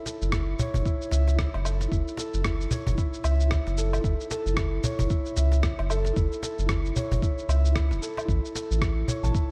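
A swung 16th-note groove at 113 BPM in 4/4 carries this mystical organic downtempo excerpt in F# minor, resting on an F#m7 chord, where a ringing, thumb-plucked concert harp plays tape-echoed arpeggios from the opening second, joined almost at once by a gritty, sampler-style electronic shaker, rim click and woodblock, a woody cajon struck with hard hands, a thumpy electronic kick, and a round, nasal analog bass sitting deep and up front, all in a dark production with light reverb and small-room ambience.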